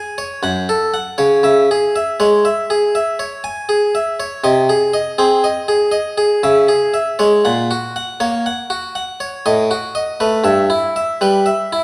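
A moderate recital-hall reverb surrounds a single up-front harpsichord, its plucked, bright Italian-style tone coming from one set of strings. This solemn, flowing fragment of a baroque-style suite movement moves in three with a rubato feel, the solo part reaching from F#2 up to G#5. The harmony passes from F#m and C#m through G#/B# and F#/A# to B7/A before settling on Em/G at 10.4 seconds.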